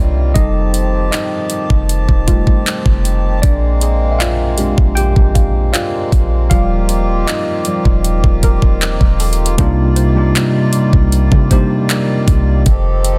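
A worn, slightly out-of-tune tine electric piano carries the lead for the first 9.6 seconds of this moody, longing contemporary R&B excerpt in C minor at 78 BPM, moving through F9, Bb13 and Ebmaj9 before the harmony shifts to Cm11. Underneath, a reedy, breathing pedal harmonium holds sustained chords with a sidechain pumping effect, a deep, boomy 808-style bass anchors the low end, and a very quiet, dark, detuned pluck with chorus adds a soft texture. An up-front electronic drum kit enters at 0.4 seconds with a knocking kick, metallic hi-hats and handclaps, all within a dense, heavily limited modern mix with digital ambience.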